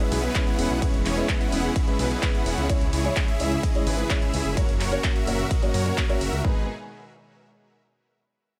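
Euphoric and emotional, this festival progressive house drop at 128 BPM in G# minor rides a huge, detuned supersaw riff over a thick, saturated saw bass and a punchy kick that joins at 0.4 s, with handclaps, hi-hat and ride cymbal from a layered dance kit, a soft felt-muted upright piano, and lush bowed strings sitting in the background. The piano, supersaws, strings and bass pump against the kick, delay trails the piano and supersaws, and a dry sound moves through E6, C#m and F# before landing on G#m at 6.4 s.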